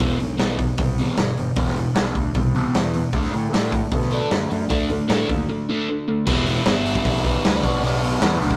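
A crunchy, double-tracked overdriven guitar with a phaser drives this raw, swaggering garage rock excerpt in E minor at 153 BPM, backed by a punchy fuzz bass and a gritty, saturated drum kit in a pumping small room, with a break at 5.5 seconds before the second section begins at 6.3 seconds, all captured as a rough rehearsal-room recording with tube saturation.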